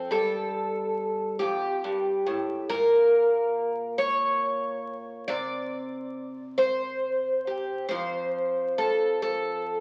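Heard through the crackle of a very old 78 rpm record and a moderate large-studio reverb, this hopeful, peaceful folk excerpt features a lone picked twelve-string acoustic guitar, woody and shimmering with old strings and octave-doubled ring, played up front in an unhurried 6/8 at 46 BPM, moving from Fadd9 to C5 across its 9.8 seconds.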